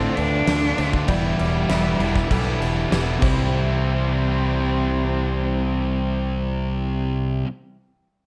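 A straight 4/4 pulse at 98 BPM drives this soaring, hopeful post-rock excerpt in C major: a huge arena drum kit with punchy kick, fat snare and crash cymbal plays from 0.2 to 3.4 seconds and closes on a fill, under a growling, overdriven fingered bass up front and riffs from a bright overdriven guitar and a thick, distorted fuzz guitar in the background. Over chords moving from Dm7 to Em7 to C, one player on a rich bowed cello carries the expressive melody with vibrato, portamento and analog delay. A very quiet hollow-body guitar adds clean, compressed arpeggios; a soft, felt-muted upright piano contributes mellow, delayed arpeggios with audible action noise until 3.8 seconds; and a barely audible pedal steel holds sustained slide chords with volume swells, all in a light small-room reverb.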